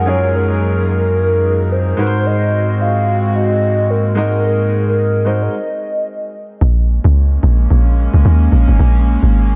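A hollow, woody synth lead with warbling vibrato sings over clear, worn grand piano, an airy, breathy pad and a full sine sub bass as a filter sweep runs through this soulful, deep amapiano passage, then the piano and sub bass stop at 5.5 seconds before a round, dark log drum bass drops in up front at 6.6 seconds beneath the lingering pad, all soaked in a dreamy plate reverb.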